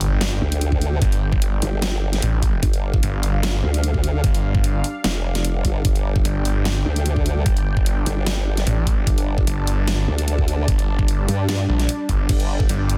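Heavy and aggressive, this wobble dubstep passage at 149 BPM, in a half-time 4/4 feel and cut from a longer piece, carries a very quiet electronic impact at 0.1 seconds, while a growling, overdriven distorted saw bass and a chorused formant-sweep wobble bass sit up front, a layered drum kit with crash cymbal, hi-hat and a huge snare is joined by a knocking electronic kick drum at 0.7 seconds, a lush, bright supersaw pad holds sustained chords through phaser, low-pass filter and sidechain pumping, and a dark, lo-fi tape-like pad warbles in the background from 0.4 seconds, all within a dense, heavily limited modern master.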